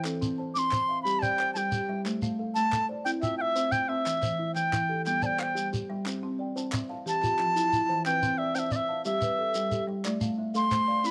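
Southern African traditional music in a hypnotic, mbira-style interlocking cycle in 12/8, heard as a short cut from a longer piece. A bright, reedy wooden flute carries the melody up front, airy and close-miked with vibrato and tongued notes, over arpeggios from a soft, hollow-toned kalimba and a dark, woody marimba played with medium mallets. Crisp group handclaps and a grainy shekere supply the percussion within light reverb and small-room ambience, and a new section begins at 6.1 s.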